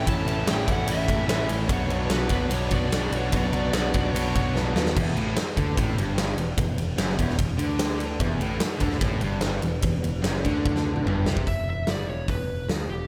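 A straight 4/4 pulse at 148 BPM drives this brooding, gritty classic rock excerpt in E dorian, with a big, natural-sounding rock drum kit up front, its tight kick and medium-tuned snare joined by hi-hat, ride, crash and toms, and drum fills at 4.5 and 10.6 seconds. Underneath, a modern bright picked electric bass holds the low end directly through to the close, while a cranked, overdriven stack guitar and a compressed, distorted electric guitar sit in the background playing a riff until 11.5 seconds. A dark, fuzzy lead guitar with slapback echo carries the melody at the start and returns for the final stretch over an E5 chord. Very quiet textures fill in the space: a shimmering, octave-doubled twelve-string acoustic guitar with fresh strings and finger squeak during the opening five seconds, and a soft, flute-like tonewheel organ with key click, chorus vibrato and a slow rotary speaker sustaining chords through A, Bm and Em. 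Light reverb and small room ambience frame the mix.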